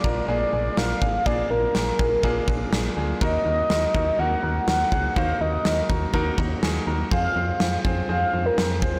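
Nocturnal and melancholic, this synth-pop fragment, cut from a longer piece, sets a mellow, horn-like synth lead with a warbling, vintage sawtooth tone, chorus and delay over a clear, polished baby grand piano and a round, dark FM bass, as the harmony moves from Bb7 to Ebm at 3.2 seconds and Fm at 7.1 seconds. A huge arena drum kit sits up front with a punchy, softly clipped kick and a medium-tuned snare in a pumping room. The whole recording is blown-out and overdriven, bathed in moderate recital-hall reverb with a touch of small-room ambience.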